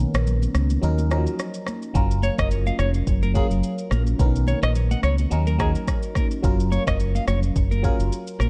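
The sound is dark and close, with barely any room ambience, in this sunny, breezy afrobeats excerpt cut from a longer piece. A round, punchy fingered electric bass sits up front beside an electronic afro-pop drum kit, whose deep kick, rim click and shaker carry a gritty, vintage 12-bit sampler texture and a gentle sixteenth-note swing. A barking FM electric piano supplies the accompaniment, biting and percussive with a warbling noise layer and a phaser on its fast-attack, decaying notes. High-tuned congas, played with hard hands on thin skins, join at 0.3 seconds and stay bright but in the background. The opening break gives way at 1.9 seconds, and at 2.2 seconds a clean, scooped electric guitar enters with a picked riff, colored by tremolo and digital delay. The harmony cycles through Bmaj9, D#m7 and F#maj7.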